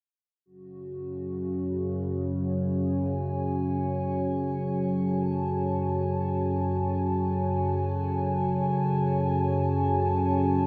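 A low analog drone, detuned and warbling with a vintage, evolving tone and chorus, sits up front from 0.9 seconds, holding the bottom of this ominous dark ambient piece in F# minor. Above it, a deep, moody analog pad with a ring-modulated edge sustains an F# minor chord from 0.5 seconds, washed in chorus and shimmer reverb. The music drifts in free time inside a cavernous cathedral reverb, and the recording is cut from a longer piece.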